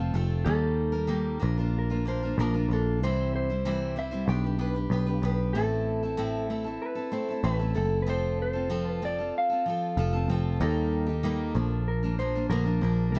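Nostalgic and hopeful, this folk rock and heartland rock excerpt moves at 95 BPM in a straight 4/4, with a dark, clean electric guitar carrying the melody over a picked steel-string acoustic guitar's warm, up-front accompaniment. A growly, foam-muted electric bass sits forward in the mix, driving the chords from Eb and Bb through C, G/B and Am to F before returning to Eb and Bb by 11.6 seconds. The sound is that of a dry, close 1970s-style studio take in a small room, with a faint mains hum beneath.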